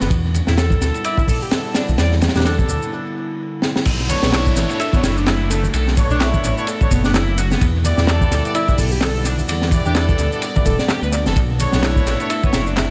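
A swung, crunchy breakbeat with a punchy kick, high-tuned snare and dark cymbals drives this swaggering, gritty breaks excerpt, layered with a tape-warm garage kit of handclaps, ride and shaker, very quiet congas, and a deep, rumbling detuned saw bass up front. A screaming, guitar-like overdriven synth lead riffs over a warbling lo-fi pad that pumps against the beat, while a mellow, breathy alto saxophone with AM-radio grit drifts distantly in the background from 1.0 seconds. After a brief break and drum fill, the drop lands at 3.9 seconds with a faint downlifter, followed at 4.1 seconds by tight, clear horn stabs, all bathed in an echo-heavy, small-room mix.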